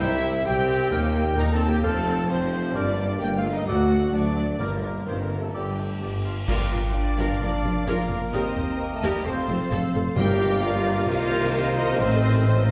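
Heard from further back in a reverberant recital hall, this determined, swashbuckling excerpt from a heroic adventure film score opens with a distant, intense violin section carrying the melody over lush second violins, an airy flute, a mellow clarinet and a close-miked cor anglais. Rich violas, roomy French horns, softly present trombones, dark trumpet stabs, a vintage-toned tuba, focused cellos and expressive double basses fill out the full symphonic sound. Bright cymbals and concert bass drum arrive at 2.8 s, crisp hard-mallet timpani first strike at 4.6 s, and a full-ensemble accent at 6.5 s launches the second section.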